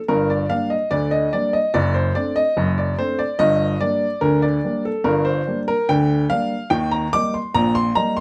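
A studio sound with moderate reverb frames this short, lively and playful ragtime fragment in 2/4 with a straight feel, where a solo upright piano, intimate, woody and up front with audible action noise, plays from 0.1 s to 8.2 s over chords moving from Gm to D7/F# and back to Gm before landing on Eb at 6.7 s.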